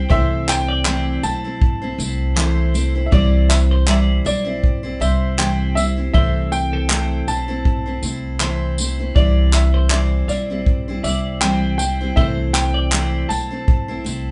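Acoustic pop with a sunny, carefree mood at 80 BPM in a lightly swung 4/4, where a dark, mellow upright piano carries the melody over a picked steel-string acoustic guitar, a reedy electric piano in the background, a thumpy gut-string upright bass and a tight, up-front unplugged drum kit of kick, handclaps and tambourine, while a bright, twangy twelve-string electric guitar plays arpeggios from 0.1 to 13.3 seconds, all moving between Am and C in a live-sounding room with moderate reverb.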